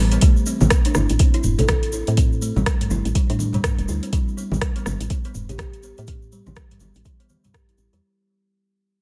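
Afro house with a spiritual, earthy mood, where a hollow, ringing kalimba plays airy arpeggios through a filter sweep, digital delay and sidechain pumping over a round, mellow FM bass that also pumps. A deep, up-front electronic kick and a produced afro-pop kit with metallic hats, rim clicks and toms sit in studio reverb, while low-tuned congas with soft hands and a grainy, bright egg shaker add acoustic texture. The harmony moves from Am7 to G at 4.1 seconds, and this short cut from a longer piece fades out from 0.2 seconds onward.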